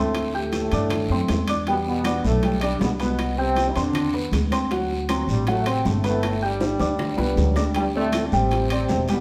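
Festive and joyful, this short salsa clip in G major moves at 158 BPM, with a clear, present trombone section carrying the melody with vibrato over a dark, mellow baby grand piano and a growly, thumpy pizzicato upright bass set up front. Congas with a thick-skinned tone sit in the background beside soft, round bongos, ringing metal-shelled timbales, a raspy guiro and very quiet woody claves that enter at 2.0 seconds. The band plays live in one room with a large studio reverb, cycling through D7sus4, Em7, Cmaj9 and Gmaj7 before a drum fill at 6.6 seconds leads back to D7sus4 at 7.8 seconds.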